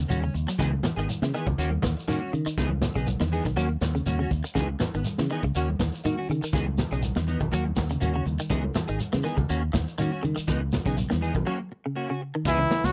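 A lightly swung sixteenth-note afrobeat groove drives this defiant passage, with a gritty, saturated breakbeat kit and a punchy, up-front fingered bass, ringing congas set back in the mix and a grainy shekere, while a bright semi-hollow guitar plays phased arpeggios and a dark clean guitar adds chorused stabs over alternating D#m7 and C#m9 chords, all in a dry, close 1970s-style studio sound, until a break at 11.5 seconds gives way to a clear, scooped trumpet melody and a smooth-topped trombone second line entering at 12.5 seconds as the fragment cuts off.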